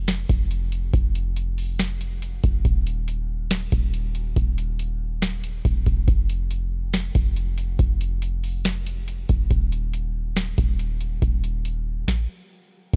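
Close, nearly reverb-free sound frames this ethereal, spacious cloud-rap hip hop fragment at 140 BPM in a half-time feel, where an up-front, tape-warm booming analog drum machine hits with a deep kick, a tonal snare and metallic hi-hats while a deep, mellow, sine-based 808-style bass with a noise layer, fast attack and decaying tail sits between Eb1 and F1, before a stop lands between 12.1 and 12.9 seconds.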